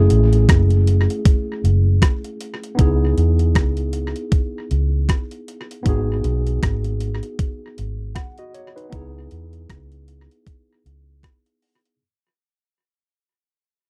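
Lovers rock reggae with a longing, smooth mood, this brief passage cut from a longer piece sits on a relaxed 4/4 groove with a swung sixteenth-note feel, and the whole stretch is a fade-out. A gated 80s digital drum machine sits up front with a thumpy, sampler-style kick, hi-hat and rim click, its overdriven sound re-recorded in a small room and touched with tape echo. The vintage muted fingered electric bass is equally forward, dark, round and amped with a foam-muted thud, until it stops at 11.2 s. Behind them, a tine electric piano lightly overdriven through built-in speakers supplies the accompaniment, its worn, slightly out-of-tune character drifting over F#m7, C#m7 and G#m7. The dry, close recording has a 1970s studio intimacy with little reverb, keeping each part distinct.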